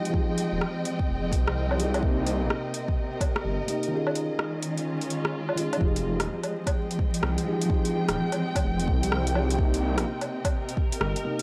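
A felt-muted upright piano and a dark symphonic string section open this rainy, melancholic future garage excerpt together, both pumping under sidechain compression. The piano plays soft, intimate accompaniment with audible action noise and a tape echo, while the bowed strings hold lush, vibrato-rich sustained chords with a smooth top, moving through a minor-ninth chord, a minor seventh and a suspended ninth. A detuned sawtooth bass arrives at 0.5 seconds, menacing and saturated, its filter swell giving it an evolving, up-front growl. A deep, tape-warm electronic kick and a deep house kit of metallic hi-hats, rim clicks and woodblock sit forward in the mix with studio reverb, riding a swung shuffle in common time. The kick drops out from 3.9 to 5.8 seconds, just before the progression returns to its opening chord for a second section. The whole recording has a dry, gritty hardware character with light reverb and a bed of vinyl crackle.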